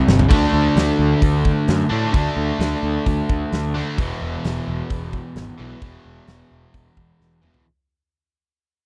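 A bright, double-tracked overdriven guitar drives this confident, swaggering classic rock clip, picking a riff up front that moves from D5 to E5 at 4.0 s. A fuzzy, warm picked electric bass sits beneath it, while a big-room acoustic drum kit with a punchy kick, medium-tuned snare, toms, hi-hat and crash cymbals opens with a fill and plays another at 7.2 s. The dry, close 1970s-style studio sound carries a straight 4/4 feel as the passage fades out from 0.3 s, cut from a longer piece.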